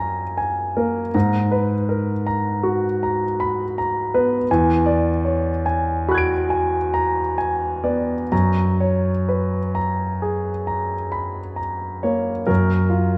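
A clear grand piano opens on an F#maj9 chord, then drifts through G#m9, E9 and F#add9 before settling on F#maj7 at 12.5 seconds. This serene, hazy impressionist classical solo is in F# major and 9/8, with a slow rubato pulse of 41 to 55 dotted-quarter beats per minute, cut from a longer piece. The intimate, up-front instrument spans E2 to D7, with its mechanical action audible, set in a dark production with a moderate scoring-stage reverb that lingers about 1.8 seconds.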